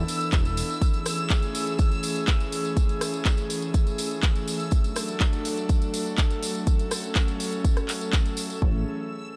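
Heard in a digital ambience, this short cut from a longer progressive house track moves at 123 BPM in a straight 4/4 in A major, with an expansive, uplifting mood. An airy, breathy pad holds sustained chords throughout, its sawtooth and triangle tones layered with noise and treated with chorus and vintage 12-bit sampler grit, pumping against the sidechain as the harmony moves from E7sus4 to Amaj7 and then D. Up front, a punchy, layered electronic kick drives the groove, joined by a house kit of handclaps, rim clicks and metallic hi-hats, plus a jingly acoustic tambourine heard in a small room. In the background, a reversed, dreamy granular texture swells high above on a detuned triangle tone, bathed in its own reverb and also pumping with the sidechain. A funky analog bass, built from sawtooth, pulse-wave and triangle tones with ring modulation and a decaying filter pluck, appears only briefly: in the opening 0.6 seconds and again from 8.6 seconds, as the chords return to Amaj7.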